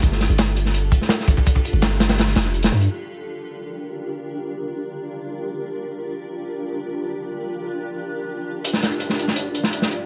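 A crunchy, saturated breakbeat kit of kick, snare and hi-hat drives the opening drop of this atmospheric, nostalgic drum and bass excerpt alongside a deep sine 808-style bass and a quieter pitched-up sampler kit of hats, snare and tambourine, then at 2.9 seconds the beats fall away to leave a cloudy, detuned granular pad with 12-bit grit drifting alone until the crunchy kit returns at 8.6 seconds.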